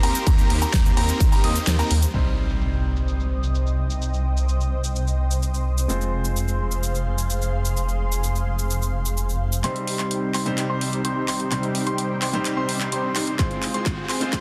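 This anthemic, euphoric festival progressive house track in C minor at 128 BPM opens mid-drop with a punchy, up-front electronic kick; an overdriven big-room drum kit with a huge snare, claps, hats, shaker and cymbals; a thick, saturated detuned saw bass; a lush chorused and phased unison pad; brilliant 12-bit-gritty piano arpeggios; and huge, bright supersaw chords with a tape-worn edge, the bass, pad, piano and supersaws all pumping to the sidechain. By 2.1 s the kick, supersaws and bright piano have dropped away, a very quiet impact lands, and a polished grand piano begins its accompaniment over Cm and Fm while filter sweeps move across the drums and pad. At 9.6 s the bass stops and a build-up begins, with a drum fill, returning filter-swept supersaws and arpeggiated bright piano, a faint riser and the kick returning near the end, all under a dense, heavily limited master.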